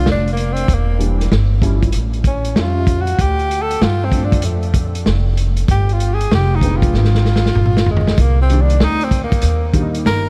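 Jazz-hop excerpt at 96 BPM with a 16th-note swing, smooth and relaxed, where a breathy, subtoned tenor saxophone with vibrato, scooped notes and delay solos throughout over a dark, mellow concert grand piano with audible action noise and ensemble chorus in the background, a woody, thumpy pizzicato upright bass up front, and a muffled, lo-fi vintage drum kit with a tight kick that plays a fill from 6.9 to 8.2 seconds, all wrapped in light reverb and vinyl crackle as the chords move from Bbmaj9 through G7b9 to Cm9.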